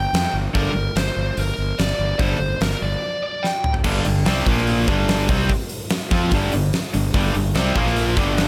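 A dark, high-gain lead guitar opens this heavy, aggressive hard rock excerpt in G minor at 146 BPM, its distorted melody carrying a digital delay and sitting up front alongside a growly, fuzz-laden fingered bass. A huge arena drum kit with a punchy kick, fat snare and bright cymbals crashes in almost at once, while two overdriven rhythm guitars, one of them a cranked stack, join within the first second to grind out a riff in the background. The lead melody stops at 3.7 seconds, a third, double-tracked distorted guitar adds weight to the riff from 3.8 seconds, and a drum fill leads into a new section at 3.9 seconds. From there the harmony moves between G and Bb power chords as the bass and drums drive on. A light, small-room reverb surrounds the mix.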